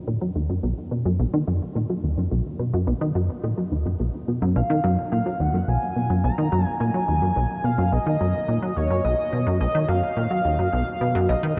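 A plucky analog synth bass opens this ambient excerpt at 107 BPM in B lydian, its punchy, funky sawtooth-and-pulse riff sitting up front with analog chorus, delay and a filter sweep running through the whole passage. At 4.6 seconds a pulse-width lead enters with a shimmering, retro melody, its sustained tone thickened by chorus, vibrato and delay. A huge, wet reverb and dark production give the short fragment an expansive, luminous mood.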